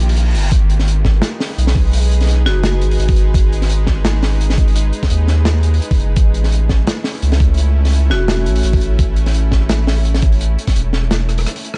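A saturated sub bass sits up front in this dark, cinematic half-time drum and bass excerpt, its deep, thick sine tone holding from the opening until 11.5 seconds. At 170 BPM in 4/4 with a light swing on the sixteenths, a crunchy breakbeat kit of hi-hat, rim click and a medium-tuned snare carries a smooth, rolled-off feel, joined at 0.5 seconds by an overdriven electronic kick with a knocking punch. Above them, a tense, string-like drone built from detuned sawtooth voices and a noise layer sustains chords with slow attack, vibrato and its own reverb, pumping with sidechain compression as the harmony moves from D#add9 to G#m and then to A, in G# phrygian. A reverse cymbal sounds in the background over the brief opening break, and a hard-mallet marimba rings out on F#4 in two short, bright hits, trailed by dub echo. A drum fill closes the passage, and the overall production stays dark and close, with little room sound.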